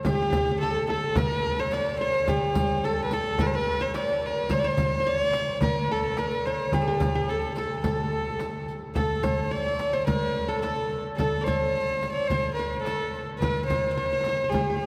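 Passionate and warm, this Arabic maqam ensemble piece, cut from a longer performance, sets a dark, intimate solo violin up front, its airy, softly attacked bow touched with light vibrato, over a bright-edged, plectrum-plucked qanun playing a second line in the background. Percussion comes from a deep, large frame drum struck with hard hands, a small, high clay-shelled darbuka kept close and dry behind it, and a very quiet riq with bright jingles. The ensemble sits in a church or concert hall with a long cathedral reverb, and the music moves into a new section at 9.0 seconds.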